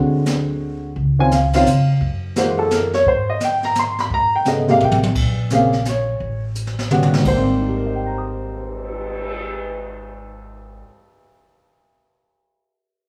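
Piano and upright bass open this swinging jazz trio waltz together, the baby grand sitting up front with a warm, natural tone over the bass's woody, growly pizzicato. Brushed drums join at 0.3 seconds with dark cymbals, a high-tuned snare and a boomy kick, and the band hits a shared accent before drum fills at 4.8 and 6.6 seconds mark the turns into new sections. The trio sounds like it is playing live in one room, with a moderate large studio reverb, in this passage cut from a longer piece.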